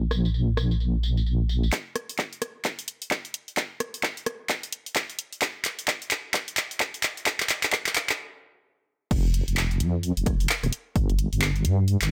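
A deep, dark wobble bass with a detuned sawtooth-and-sine tone and chorus sits up front in this bouncy, moody two-step UK garage clip, opening the clip and then falling away until the drop returns it at 9.1 seconds. A punchy, tape-warm analog drum machine plays swung handclaps, hi-hats, rim clicks, tambourine and crash cymbal through a low-pass filter. An electronic kick joins at 1.7 seconds for a build-up driven by a long drum fill, and the build-up halts in a brief stop at 8.2 seconds, all set in a digital ambience.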